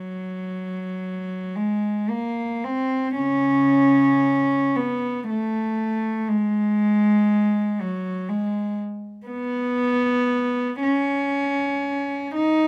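Classical and mournful, this yearning 12.7-second fragment from a longer piece gives a single bowed cello, played sul tasto and up front, free rein in free time between C#3 and D#4, its pure, floating tone and smooth top blooming into a moderate, large studio reverb.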